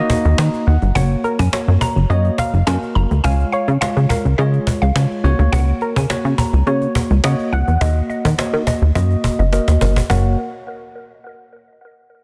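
A punchy, funky analog bass sits up front in this euphoric, carefree dance-pop excerpt at 105 BPM in F# major, its detuned, wave-folded tone plucking with a fast attack and quick decay. Beneath it, a warm, clean tine electric piano heard through its built-in speakers provides accompaniment behind a low-pass filter, opening with a short fill, and a filter sweep runs from 1.0 seconds. A snappy, saturated cajon with snares and hard hands carries the straight 4/4 groove, and a drum fill arrives at 9.5 seconds. Two dark, chorused synth plucks share the melody: a woody, FM-based mallet-like tone with a phaser and a noise layer, and a softer, rounder, slightly nasal pluck, both trailing digital delay. The harmony moves from D#m through F#, C# and F#/C# and back to D#m before landing on F#, all set in light reverb and a dense, heavily limited modern master.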